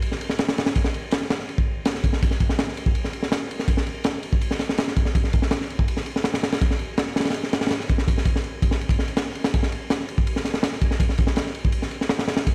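A crunchy breakbeat drum kit opens this drum and bass excerpt at 164 BPM in a straight 4/4, carrying the whole 12.5 seconds on its own with a nostalgic, raw mood. The punchy kick, high-tuned snare and dark ride cymbal sit up front, saturated and gritty with a rolled-off top, touched by light reverb. The sound sits in a bare room as if played through a big sound system, framed by a large studio reverb.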